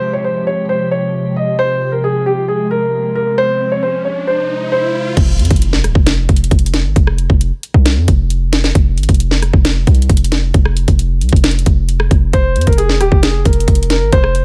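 Melancholic and dark, this half-time trap cut in F minor moves at 134 BPM and is taken from a longer piece. It opens with a mellow, dark concert grand piano carrying the melody through a low-pass filter and delay, set over a glassy, warbling FM pad that holds an Fmadd9 chord with ensemble chorus and its own reverb. A riser builds from 2.7 seconds into an impact at 5.2 seconds, where the harmony drops away and the hard-hitting 808-style bass and trap drum kit arrive together. The 808 is punchy and heavy, a sine tone with a noise layer and a fast attack, while the kit sits up front with a hard-clipped kick, sharp snare, metallic hats, rim clicks and crash cymbal. The piano melody returns at 12.3 seconds above the bass and drums, all within a digital ambience.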